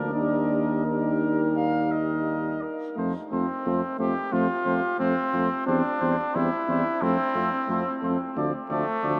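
With uneven, rubato beats around 87 BPM in 4/4, this stately, triumphant classical brass quintet excerpt in F major (tuned to A4 = 444 Hz) sets a distant, lightly vibrato trumpet melody in the background against a clear trumpet second line up front, a bright, vintage-toned trombone with light vibrato, a mellow French horn and a warm, vintage tuba bass up front, all playing throughout the 9.2 seconds in a vast, echoing cathedral space, with harmony moving from Eb to F at 3.0 seconds and settling on Dm at 8.4 seconds.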